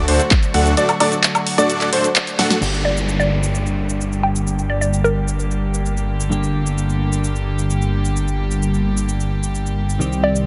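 This euphoric, emotional festival progressive house excerpt in G harmonic minor at 130 BPM opens on a drop where a huge, thick supersaw riff with cassette-tape color and dub echo, clear grand piano arpeggios and floating bowed strings with 12-bit sampler grit pump over a menacing, beating detuned saw bass and punchy, up-front house drums with claps, cabasa and woodblock, until at 2.6 seconds the supersaw and piano stop and a clean, fingered electric guitar takes up the accompaniment beside an electronic downlifter, while a hollow, bouncy, warbling square-wave pluck with chorus carries the melody from 2.8 seconds, all under light reverb.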